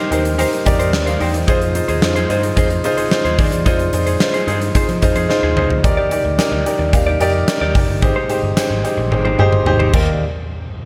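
1980s-style pop at 110 BPM, uplifting and glossy, in which an intimate concert grand piano with audible action noise and deep bass provides the accompaniment under a shimmer reverb, a bright, clean, picked electric guitar riff glistens through lush chorus and tape echo, a growly overdriven picked bass drives underneath, and a huge arena drum kit with a punchy kick, bright cymbals and gated reverb sits up front, rolling into drum fills at 5.3 and 9.1 seconds as the harmony moves from Cm7 and Fm7 to Ebmaj7 and Abmaj7 in this short cut from a longer piece.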